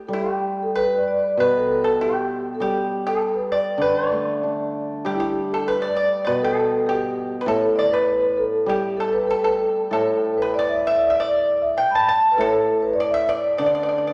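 Rubato phrasing floats over a loose 2/4 pulse at 98 BPM in this festive, pastoral Chinese traditional piece for chamber ensemble in the D zhi mode, a short cut from a longer work that shifts into a new section at 5.1 seconds. A vibraphone with medium mallets carries the metallic, airy melody with a fast motor vibrato, while an up-front pipa plucked with fingerpicks adds a bright, dry, percussive second line. Beneath them, a warm hammered dulcimer provides shimmering accompaniment in the low register, all set in a wet scoring-stage reverb.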